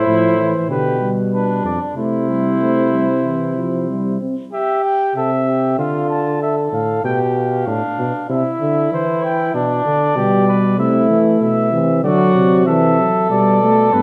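Elegant and stately, this classical imitative canzona for brass ensemble moves at a measured 96 BPM in 4/4, a fragment of a longer piece in C major. A dark trumpet carries the melody above a distant, warm flugelhorn on the second line, while a close-miked bass trombone anchors the bass up front with light vibrato. A smooth-topped euphonium adds accompaniment, dropping out at 4.4 seconds and returning at 10.2 seconds, all set in a wet recital hall reverb.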